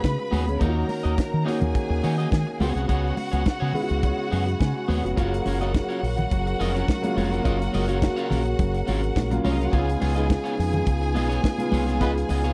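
A glamorous, danceable disco groove at 105 BPM opens with a tight funk kit with a high-tuned snare, a dark, punchy fingered bass up front, soft background congas, a slightly broken-up, twangy electric guitar and a grand piano with audible action noise that takes a fill from 3.5 seconds. A lush, bowed violin section carries a second line above chords moving from Db7sus4 to Ebm7, and at 5.2 seconds a mellow French horn section enters in the background with sustained chords over Gbmaj7 and Db7. A punchy, roomy pop horn section adds a brief octave-doubled stab in a band accent at 12.0 seconds, all within a dry, close 1970s-style studio sound.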